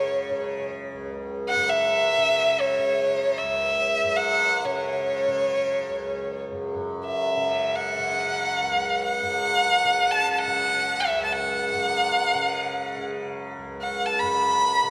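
Hindustani classical music in free time, introspective and full of longing, this excerpt sets a single bowed violin up front, its rich, focused tone carrying the melody with vibrato high in its register. Beneath it a softly plucked tanpura sustains a buzzing, shimmering drone throughout, sitting well back in the balance. A cathedral reverb with a 4.1-second tail bathes the sound, lending the feel of a church or concert hall.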